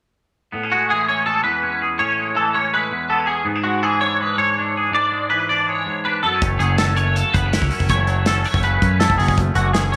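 A moderate echo-chamber reverb gives this short cut from a longer math rock and midwest emo piece a sense of open space around its up-front instruments. It moves at a straight 163 BPM in 4/4 in A major, with a wistful, intricate mood. A twangy, compressed electric guitar enters at 0.5 seconds with clean accompaniment coloured by lush chorus. At 0.7 seconds a second bright, picked guitar joins with arpeggios, shimmering through ensemble chorus and slapback echo. The harmony moves from Amaj7 through E7/G# and F#m7 to Dmaj7/F#. At 6.4 seconds a growling, overdriven picked bass arrives alongside a tight acoustic drum kit of hi-hat, kick and medium-tuned snare, recorded in a small room.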